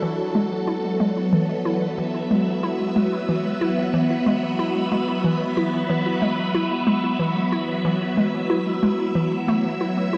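Ambient, sequencer-driven space music with a cosmic, luminous mood, cut from a longer piece, where a swirling, warbling string machine holds sustained chords up front through ensemble chorus, phaser and shimmer reverb while a hollow, bouncy square-wave pluck with a detuned noise layer plays a riff through chorus and tape echo, both running the full 10.2 seconds inside a lush hall reverb with a dark production and a faint mains hum.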